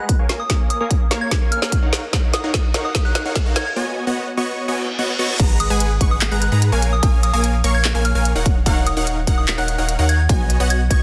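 A bright, detuned supersaw stab carries this dreamy, emotional future bass excerpt in Eb minor at 147 BPM in a half-time feel, its filter sweeping through a build-up while a punchy, up-front electronic kick and a trap kit with a woody, clipped snare, crisp hats, handclaps and crash drive a drum fill beneath a soft FM synth bell melody with chorus and tape echo. A very quiet riser and reverse cymbal enter at 1.8 seconds and lead into the drop at 5.4 seconds, where a deep, thick saturated sub bass and a lush, ring-modulated unison pluck playing arpeggios join the pumping mix. The sound is dense and heavily limited, with light reverb and small room ambience on the drums, over chords moving through Bbm7, Ebm7, B69 and Abm7.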